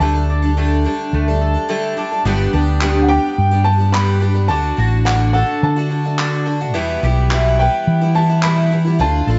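Hopeful and uplifting, this short indie folk cut from a longer piece moves at 107 BPM in a straight 4/4, settled in G major with an arrangement that builds. A woody upright piano carries the melody high in its range, its boxy tone, audible action noise and long sustain trailed by tape echo. Beneath it, a picked twelve-string acoustic guitar supplies shimmering, octave-doubled accompaniment with fresh strings and the occasional finger squeak, while a mandolin adds round, double-strung arpeggios. A fingered electric bass sits up front, amped and punchy, anchoring the chords as they move from Dsus4 to G, D and Em. Group handclaps with a hollow, live-room character join at 2.8 seconds and drop out at 8.6 seconds, and the whole mix rests in light reverb with a softened top end.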